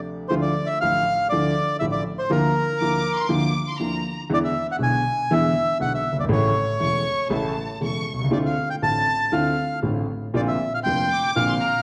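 Tense and passionate, this rubato tango fragment puts a reedy, dark, close-miked bandoneon melody up front over smooth, vintage grand piano accompaniment, with a rich chamber violin section entering at 2.8 seconds on a bowed, vibrato-laden second line, the recording bathed in recital hall reverb and the warbly pitch drift of worn old cassette tape.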